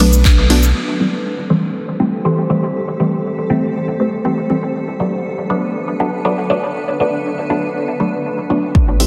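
A muted, detuned sawtooth chord stab sits up front in this hazy, deep dub techno excerpt, its phaser and dub echo trailing behind a filter sweep from 0.8 to 8.8 seconds over a cloudy, evolving granular pad, both breathing with sidechain pumping, while a round sine sub bass, a deep electronic kick and a deep house kit of handclaps, dark hats, ride cymbal and shaker with its own dub echo appear only in the opening 0.7 seconds and again at the very end, all bathed in a dreamy cathedral reverb.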